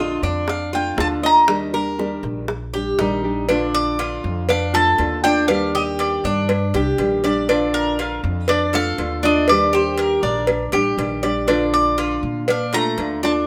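A mellow, round mandolin sits up front with the melody, its picked double strings carrying this relaxed, warm piece of Cuban son and guajira at 120 BPM in a straight 4/4, in Bb major and tuned to A4 = 444 Hz. Alongside it, a bright, metallic Cuban tres, also up front, plays picked arpeggios on double strings with some octave-doubled courses, while a full-bodied nylon-string guitar fingerpicks a deep classical-style accompaniment. Beneath them, a woody, dark upright bass with gut strings gives a thumpy pizzicato foundation, and tight, high-tuned bongos and cowbell, close and dry under soft hands, come in at 0.5 s. The harmony rocks gently between Bbmaj7 and Ebmaj7 throughout, with a short opening passage giving way to a longer second section at 3.5 s. Moderate studio reverb lends the ensemble a natural sense of room, and the clip is cut from a longer piece.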